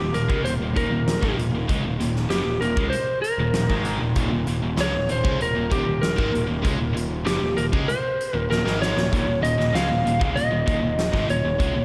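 A dark, slightly broken-up lead guitar carries the melody up front in this powerful, anthemic hard rock piece at 97 BPM in 4/4, its compressed tone touched by slapback echo. A cranked stack guitar with overdrive and phaser sits behind it, and together with a scooped, high-gain distorted guitar it plays bright picked riffs over a fuzzed, overdriven electric bass. A huge arena drum kit with a fat snare and punchy kick plays up front and breaks into a fill at 8.5 seconds, all set in a lush hall reverb with a big arena sound.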